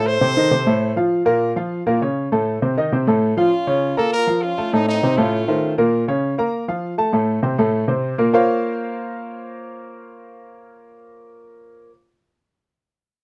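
A straight 4/4 pulse at 200 BPM drives this fiery, danceable Latin piece in Bb harmonic minor, cut from a longer performance. A woody upright piano carries the accompaniment from start to finish, sitting present and polished up front across a range from A2 to Bb5. A punchy, close-miked horn section, clear and pop-styled, plays the melody between C4 and C5 as a tight ensemble. It appears in two short bursts, at the opening and again from 3.4 seconds, sitting slightly behind the piano in level. The harmony rocks between F7 and Bbm, touches Am, and settles on Bbmadd9 near the end. Light reverb and a rough home-demo mix give the whole thing an informal, unvarnished feel.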